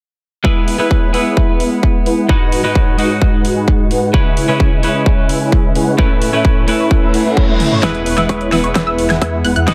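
A punchy, overdriven electronic kick drives a straight pulse from the first moment, and at 0.7 seconds a big-room dance kit joins with hi-hat, toms and a huge snare in this euphoric, triumphant slice of festival progressive house. Over it, a clean, picked twelve-string electric guitar sits up front beside huge, lush supersaw chords, both carrying a gritty vintage sampler edge, sidechain pumping and digital delay, while the supersaws also take on ensemble chorus and a low-pass filter. The harmony moves from E through G#m7 and C#m7 to Aadd9 before returning to E. A reverse cymbal and riser enter at 7.1 seconds as a drum fill leads into the build. At 7.8 seconds a bright, decaying unison pluck begins high arpeggios and a thick, saturated detuned saw bass arrives with chorus, while filter sweeps move across the supersaws and the pluck under a light reverb.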